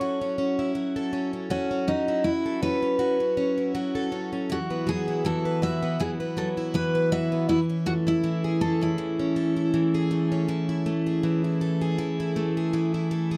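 A bright, shimmering plugged-in twelve-string acoustic guitar sits up front with octave-doubled picking and audible finger squeak, carrying the accompaniment through the whole clip to 13.4 seconds. Beside it, a full-bodied jumbo steel-string acoustic guitar picks a sunny, heartfelt pop melody over lightly swung sixteenths and F#m7, Esus2 and Amaj7/E chords, then falls away at 10.1 seconds before the closing A5/E passage. Dark, warm production and a wet studio ambience frame this short section cut from a longer piece.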